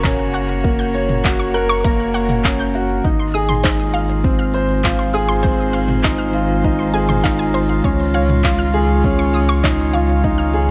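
A warm grand piano sits up front, playing a riff with an intimate, boxy tone, audible action noise and long sustain, its notes trailing into delay. This hopeful, tender piano and strings electronica moves at 100 BPM in a straight 4/4, cut from a longer piece, with chords shifting from Gb to Ab6 at 3.0 seconds and to Dbadd9 at 7.8 seconds. Beneath it, a dark string quartet holds sustained chords with light vibrato, soft attacks and an airy sul tasto bow, close and chamber-like with one player per line. A bright analog pluck built from detuned sawtooth and pulse waves with a noise layer spins arpeggios high above, its short, filtered decays treated with chorus, delay and sidechain pumping. A round sine sub bass, also pumping with the sidechain, anchors the low end alongside a deep, layered electronic kick and a deep house kit of handclaps, smooth hi-hats and toms, while a barely audible electronic impact marks the opening 0.6 seconds. 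Light reverb gives the whole mix a gentle sense of space.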